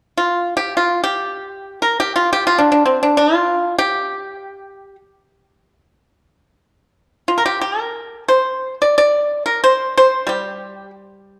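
A bright, dry, percussive pipa, played with fingerpicks and set up front, opens this elegant, longing Chinese traditional solo in free time and G yu mode, heard in a moderate recital hall and a dark overall production before moving into a new section at 6.2 seconds within this short excerpt of a longer piece.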